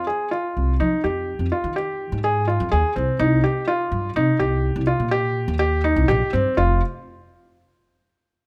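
In a straight 7/4 at 125 BPM, this pensive yet urgent fragment of contemporary chamber music sets a felt-muted upright piano's soft, intimate arpeggios, with audible action noise, over a woody pizzicato upright bass, both up front in a close, detailed sound with light reverb, moving from Fm7 to Cm7 before both parts stop at 6.8 seconds.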